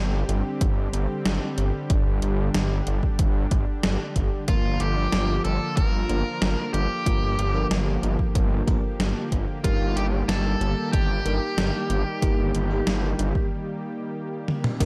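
Nocturnal and nostalgic, this synthwave excerpt moves at a straight 93 BPM in 4/4, where a smooth, full-bodied soft supersaw holds sustained chords moving from Csus2/G to Bb/G and Eb/G over a thick, detuned saw bass with chorus and sidechain pumping, a punchy, tape-toned electronic kick, and an up-front gated 80s digital drum machine whose overdriven crash, hi-hat, toms and gated-reverb snare sound sampler-like; at 4.5 s a bright, biting overdriven lead guitar carries the picked melody through digital delay while a dreamy FM electric piano with a soft pad layer adds mellow chorused, tremolo stabs in the background, and after the guitar drops out at 13.5 s a short break ends in a drum fill at 14.5 s, all within a dark, dry production.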